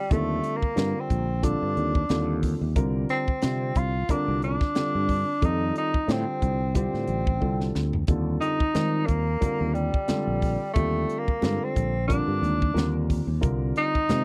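A tenor saxophone carries the melody up front, its jazz-style tone shaped by light vibrato and scooped notes, with a roomy quality around it. This is slick, funky electric jazz fusion in Eb lydian at 90 BPM in 4/4, with a 16th-note swing, cut from a longer piece and moving through Ebmaj7, C9sus4 and F9, then back to Ebmaj7 before closing on Cm11. A fretless electric bass sits prominently beneath, bright and growly with a direct, amped sustain, while a dark baby grand piano adds mellow, worn accompaniment in which the action noise can be heard. The fusion drum kit is punchy and polished, with a high-tuned snare and an airy studio-room sound. A drum fill at 7.4 seconds leads into the entrance of bright, medium-tuned, thin-skinned congas at 8.1 seconds, set in the background. The recording is dry and close in a 1970s studio style, with little reverb.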